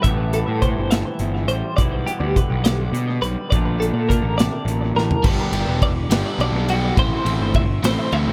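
Playful, intricate math rock and midwest emo in 6/8 at 69 BPM in G major, built on a clean, bright twelve-string electric guitar arpeggiating through tremolo and analog delay, a slightly broken-up, twangy electric guitar through a small old amp that adds delayed accompaniment until 7.0 seconds, an up-front fuzz-driven picked bass, and a punchy acoustic drum kit in a pumping studio room with a delayed echo, whose fill at 5.0 seconds ushers in a double-tracked, crunchy overdriven guitar riff at 5.2 seconds as the chords move from Am9 through G6/B and Bbmaj7 to G6 and Am7, all inside an echo-heavy small-room ambience in this brief cut from a longer piece.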